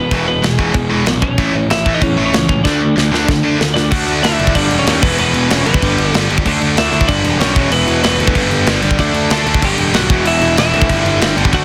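A dense, heavily limited, dry mix opens this rowdy, rebellious punk rock excerpt at 189 BPM in straight 4/4, with a bright, double-tracked distorted guitar riffing up front over a growly, fuzz-laden picked bass. A tight metal kit with a softly clipped kick, medium-tuned snare and rolled-off top enters at 0.1 s and plays a fill from 2.6 to 3.9 s, as the harmony moves from E, A and D into quick changes among G, D5 and E5. Above it, a compressed, slightly broken-up lead guitar carries the melody.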